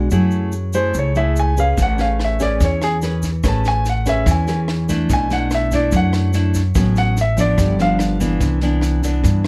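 Bossa nova at 145 BPM in 4/4 with a straight feel, this short cut from a longer piece in A major sounds sunny and sophisticated. A fingerpicked nylon-string guitar with a deep classical tone carries the accompaniment up front, beside a woody, pizzicato upright bass on steel strings. A clear baby grand piano with short sustain takes the melody from 0.7 s to 8.4 s, and the passage is framed as a piano solo. A grainy, bright tube shaker with a vintage, band-limited character sits in the background, and a compact, dry cocktail drum kit with a punchy kick, high-tuned snare and rim click joins at 1.8 s. The harmony moves through rich chords such as F#m9, Amaj9 and A69 before a G7 leads to Cmaj9. The close, detailed miking with little reverb gives the sound an intimate, present quality.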